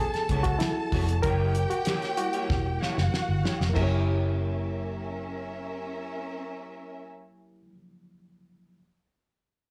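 A straight 4/4 groove carries this short cut from a longer piece of lush 1970s-style soul, silky and bittersweet, heard as a live club performance through the venue's PA with light reverb. The damped drum kit sits dry and up front, with a fat snare, tight kick, hi-hat and crash cymbal; it plays a fill from 2.5 seconds and stops at 3.9 seconds. A dark, round, foam-muted fingered bass holds the low end. Over the opening, the barky, reedy electric piano with fast tremolo and slapback echo takes a solo, moving from an A69 chord to F#7b9. An electric guitar through a small old amp adds a twangy, slightly broken-up picked riff with analog chorus and slapback echo, set lower in the mix. A warm studio violin section, bowed with vibrato and slapback echo, supplies an expressive second line until 7 seconds.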